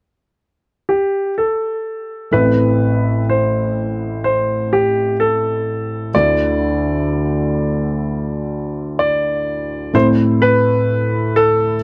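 A clear concert grand piano carries the melody from 0.9 seconds, its polished, present tone sitting up front with a short sustain as it moves between G4 and D5. At 2.3 seconds a felt-muted upright piano enters as accompaniment, soft and mellow, spanning A1 to D5 with an intimate, natural character and audible action noise close in the sound. This slow pop piece moves at 63 BPM in a straight 4/4, centred in A minor and tuned to A4 = 442 Hz, with the harmony moving from Am to Dsus2 and back to Am. The mood is longing and melancholic, carried by the two pianos playing at an even level together. The dry, close sound recalls a 1970s-style studio with light reverb, and this excerpt is cut from a longer piece.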